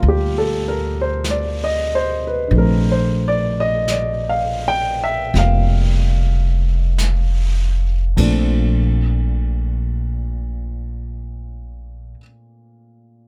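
Woody, thumpy pizzicato upright bass on gut strings sits up front in this tender, romantic jazz ballad excerpt, joined by a dark, mellow baby grand piano with audible action noise and short sustain, and a distant, roomy brush kit with dark cymbals and a boomy kick that drops out at 8.5 seconds, as the swung 4/4 feel slows through the opening Bbmaj9 passage; the bass then continues with the piano until 12.1 seconds, after which the piano carries on alone to 13.3 seconds in a dry, intimate sound.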